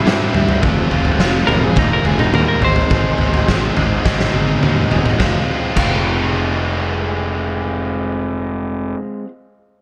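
A straight 4/4 pulse drives this bittersweet, restless indie rock excerpt, where a gritty, saturated garage drum kit with a fat snare and punchy kick sits up front beside a biting, double-tracked overdriven guitar riff and a fuzzed, fingered electric bass; a bright, clean semi-hollow guitar melody surfaces at 1.5 seconds, and a drum fill arrives at 4.0 seconds before the kit stops at 5.9, all set in a small room with light reverb.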